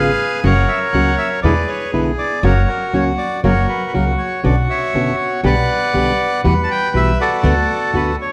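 A dramatic, sultry tango excerpt in B minor opens with a reedy, bright bandoneon carrying the melody up front with a slapback echo, over a thumb-plucked classical nylon-string guitar with audible finger squeak and a woody, dark pizzicato upright bass, all moving at a rubato 120 BPM in 4/4 through a moderate scoring-stage reverb until the bandoneon's last note at 8.3 seconds.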